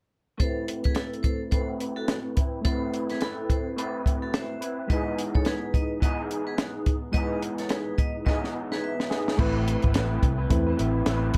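Indie bedroom pop at 107 BPM with a laid-back, hazy mood and a gentle 16th-note swing, this cut from a longer piece drifts between Amadd9 and Emaj7 under a filter sweep. A small, dark cocktail drum kit sits up front with a high-tuned snare and punchy kick, while a slightly broken-up, lo-fi electric guitar through a small old amp, with chorus and vibrato, shares the accompaniment with a reedy, worn, slightly out-of-tune electric piano that has a cassette-tape tint. A metallic, ringing vibraphone with fast motor vibrato and slapback echo carries a second line until 9.3 s; a drum fill starts at 8.3 s, and a round, foam-muted fingered electric bass enters at 9.4 s as the chords return to Amadd9.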